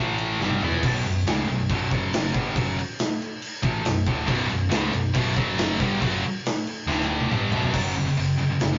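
Scooped, high-gain electric guitars open this dark, relentless heavy metal fragment with a distorted riff over a growly picked bass sitting in the background; one guitar stays up front throughout, while a second drops out at 0.8 s and returns at 4.3 s. A big acoustic rock kit with bright cymbals, a boomy kick and a medium-tuned snare comes in almost at once, playing fills early on and again just before the shift to half time at 7.7 s. The rough rehearsal-room sound has light reverb, warm saturation and a rolled-off top.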